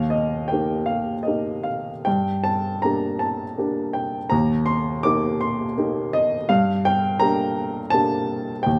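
Warm and peaceful, this brief excerpt of lyrical classical solo piano unfolds in G minor at 82 BPM in 3/4, with a rubato feel that lets the time breathe. An upright piano carries the whole passage from 0.0 to 8.8 seconds, spanning from Eb2 up to D6. Its sound is intimate and woody, with a short sustain and audible action noise that keep it close and natural, placed up front in the mix. The harmony moves gently between Eb and Gm, shifting at roughly two-second intervals. A moderate recital hall reverb surrounds the instrument, adding a sense of space around its otherwise close, personal tone.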